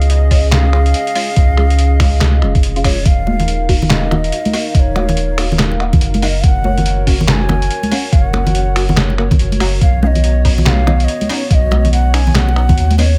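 Heavy and meditative, this half-time deep dubstep excerpt sets a breathy, dub-echoed ney melody over a dark, chorused analog pad and a round sub bass sitting up front, with a gritty, pitched-down sampler-style kit of snaps, claps, hi-hat and snare, a thumpy electronic kick, muted phased chord stabs in the background, and bright, high-tuned congas joining at 3.3 seconds, all in a dry, close sound.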